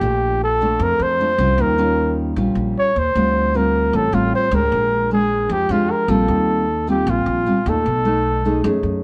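Romantic and sunny, this bossa nova moves at 153 BPM in straight 4/4, cut from a longer piece, with a breathy flugelhorn up front playing a jazz-style solo melody with scooped notes, bathed in plate reverb, until 8.8 seconds. Beneath it, a dark, classical nylon-string guitar is fingerpicked through chords such as Bbmaj7, Eb9 and Dm7, while a woody pizzicato upright bass with steel strings adds a warm low end. The moderate large studio room gives the parts a natural space, and a faint mains hum sits in the background.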